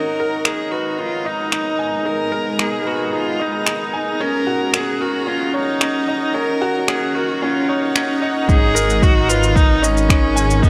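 Piano and strings electronica at 112 BPM in 4/4, intimate and cinematic, built on an up-front upright piano riff with woody action noise and long sustain, an intense, bowed solo viola melody with vibrato, both sent through digital delay, and a blurred, evolving granular pad holding sustained chords over Abmadd9 and Ebm7. Beneath them sits a dark, rumbling detuned saw bass, saturated and pumping in the background, while overdriven electronic finger snaps and shaker, re-recorded in a small room, enter at 0.5 s. The build-up gives way to a drop at 8.5 s, where a deep, layered, overdriven electronic kick arrives prominently, all set in a moderate concert hall reverb.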